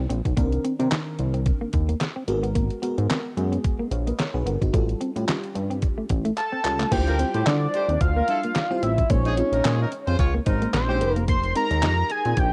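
A dark, clean semi-hollow electric guitar riff with subtle chorus opens this danceable early-eighties boogie funk cut, alongside a glossy, up-front synth bass built from pulse, sawtooth and sine tones with a filter pluck and chorus. A detuned 8-bit drum machine joins almost at once with a thumpy kick, medium-tuned snare, hi-hat, handclaps and crash, and a lush, dreamy FM electric piano layered with a soft pad adds chorus and phaser over chords such as Cm9, Abm9 and A7b13. The groove runs at 110 BPM in 4/4 with a light sixteenth-note swing. During an electric piano fill and a drum fill, a fat analog lead enters at 6.4 seconds, blending sawtooth, square and sub-octave tones with ring modulation, a filter sweep and vibrato, as the harmony moves through Dm11, Bbm11 and Fm11. A warm, distant, roomy horn section plays a second line from 7.1 to 11.1 seconds. The dry home cassette recording gives the guitar, drums, keys, lead and horns a tape grain.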